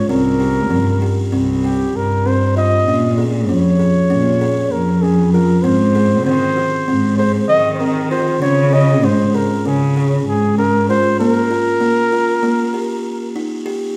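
A mellow flugelhorn melody, buzzing woody kalimba arpeggios and a veiled, con sordino cello bass line with vibrato open together in this pensive, hypnotic fragment of contemporary chamber music, moving in a straight 9/8 at 194 BPM in eighths over chords from C5 through Bbm7, Ab and Db5 to Ebadd9. The bowed cello drops out at 11.2 seconds, leaving the solo flugelhorn with its light vibrato to finish at 13.3 seconds and the ringing thumb-plucked kalimba to carry on until 13.9 seconds. All three parts sit up front in a reverberant recital hall setting that suggests a church or concert hall, cut from a longer piece.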